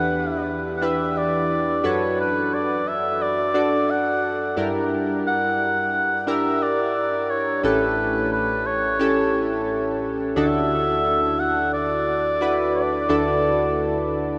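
A warm oboe leads this nostalgic, glossy pop piece, singing a solo melody in classical style between B4 and F#5, up front in the mix with a touch of delay. Beneath it, chorused retro synth keys carry the accompaniment across a span from A1 to D5, built from pulse-wave and sawtooth tones with pulse-width modulation, a filter sweep, and a fast attack that decays. The keys sit brilliant and forward, giving the arrangement its sheen. At 88 BPM in straight 4/4 and D major, the harmony moves through Em7, Bm7/F#, Gm6 and A7 before a new section opens on Dadd9 at 10.4 seconds. The whole mix is soaked in a huge ambient reverb with a 7.2-second tail, giving this fragment of a longer piece a dreamy quality.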